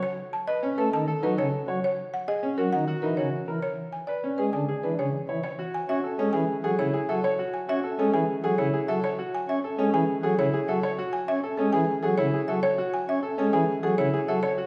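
A buzzing, woody marimba carries the melody over brilliant, vintage-toned grand piano arpeggios in this bright, hypnotic piece of minimalist classical pattern music in 3/4, cut from a longer work. At 0.8 seconds a pipe organ enters with light flute stops and a romantic voicing as accompaniment, while the harmony moves through B7, F#7 and E7 before settling on Amaj7 at 5.4 seconds. The dry marimba sits mid-forward, while the long-sustaining piano and the organ sit up front, all within a wet scoring-stage reverb.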